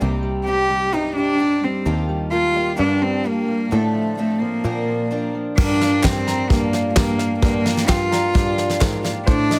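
A straight 4/4 pulse underpins this short, bittersweet and yearning passage of indie folk, taken from a longer piece and built up layer by layer. A fingerpicked steel-string acoustic guitar and a woody, boxy twelve-string with old strings and an octave-doubled shimmer lay down the accompaniment, joined by a dark, round, foam-muted electric bass. From 0.5 seconds a single cello carries the melody up front, played sul tasto with light vibrato, a soft attack and an airy bow that feels intimate and close. Across the opening section the harmony moves through a Cm, Ebadd9, Gm7, Dm7/A, Bbadd9 sequence. At 5.6 seconds it settles back on Gm7 and the arrangement grows: an upright piano adds arpeggios in the background with audible action noise, while a brushed drum kit arrives up front with dark cymbals, a fat snare and a punchy kick. Very quiet hollow group handclaps and a jingly, distant tambourine add a faint lift, and the steel-string guitar drops out at 7.4 seconds. 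Light reverb and small room ambience give the whole a natural sound.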